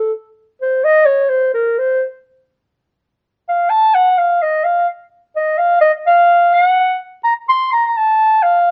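A dry, open-air sound with little reverb frames a lone clarinet, heard up close with a vintage character and a short slapback echo. In a Balkan folk idiom at a lively two-beat pulse, the mellow, classical-style clarinet carries a bittersweet, virtuosic solo spanning A4 to C6 across the full 8.7 seconds of this fragment cut from a longer piece.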